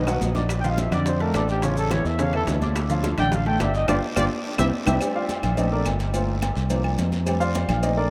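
A dark, distant trumpet with light vibrato leads this sophisticated, danceable Afro-Cuban jazz excerpt in F major at 213 BPM, soloing until about 4.9 seconds before the intimate baby grand piano, up front with audible action noise and short sustain, takes its own solo from 5.0 seconds. A round fingered electric bass sits up front beneath them, while very quiet ringing congas and background bongos and cowbell, timbales and agogo bells, woody claves, grainy maracas and a raspy guiro drive the groove. A drum fill opens the excerpt, and another fill with a band accent marks the handoff. The whole band sits in a vast, echoing space with a long ambient reverb.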